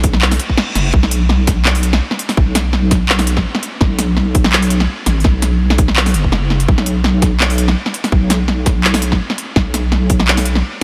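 A deep, wobbling bass with a dark, detuned, chorused tone sits up front from the start, alongside a tight electronic kick and a drum and bass kit of cracking snare, crisp hats and handclaps in a heavy, cinematic half-time drum and bass groove with a light swing. A very quiet reverse cymbal flickers between 0.4 and 0.9 seconds, while the layered, tape-tinged drums carry a touch of studio reverb. This short cut from a longer piece keeps the kick going until 10.2 seconds and the bass and kit until 10.6 seconds.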